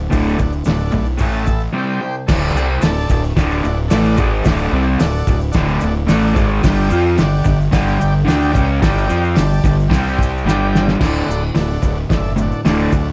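An overdriven, double-tracked electric guitar sits up front in this swaggering, raw garage rock cut, picked and carrying the riff from the first second across a range from D2 to F4. Beneath it, a fingered electric bass with warm fuzz and overdrive holds down the low end, while a cloth-damped drum kit thuds along in straight 4/4 with a fat snare, tight kick and dark, muffled cymbals that give it a lo-fi, small-room feel. A vintage combo organ adds clean, buzzy sustained chords with light vibrato, and a grainy, bright egg shaker ticks away in the background. The opening passage lands on a short break at 1.7 seconds before the main section kicks in at 2.3 seconds, and a drum fill at 10.5 seconds pushes into the final stretch at 11.0 seconds. Light reverb surrounds the playing, and the clip is taken from a longer piece.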